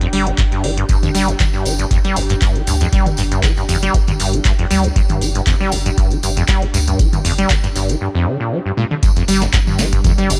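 Acid house at 118 BPM with a driving, gritty mood, built on a squelchy, resonant acid bass riff carrying a filter sweep with overdrive, chorus and tape echo, a round, deep analog bass, a tape-warm electronic kick, a booming drum machine with metallic hats, handclaps, snare and toms, a jingly tambourine, a very quiet acoustic jazz kit, and a cloudy granular pad in the background, before a break from 8.0 seconds and a drum fill at 8.8 seconds lead into a drop at 9.0 seconds, where a moody analog pad with phaser enters at 9.5 seconds.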